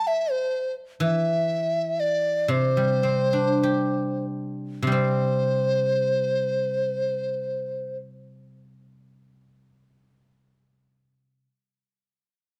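A large dizi opens this graceful, pastoral excerpt of Chinese traditional music with a mellow, hollow, airy bamboo tone, buzzing membrane, tongued notes and vibrato, joined at 1.0 s by a bright, silvery, fingerpicked guzheng ringing beneath it in a rubato 2/4 of 42-63 BPM that slows early on, and the dizi falls silent at 8.0 s, leaving the guzheng alone until 11.5 s, both up front in close, detailed sound within a moderate recital-hall reverb.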